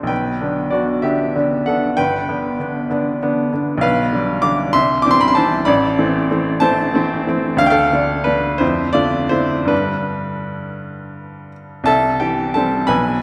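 A romantic classical character piece for solo piano, hopeful and passionate, unfolding in a rubato 6/8 at roughly 53-66 BPM in the dotted quarter, tuned to A4 = 436 Hz. A clear, intimate baby grand sits up front with audible action noise, ranging from G1 to D6 as the harmony moves from G major into C major at 3.8 s, passes through A minor and D minor, and settles back on G before arriving on C at 11.9 s. A wet concert hall reverb with a 2.0 s decay surrounds the natural piano tone in this short section cut from a longer work.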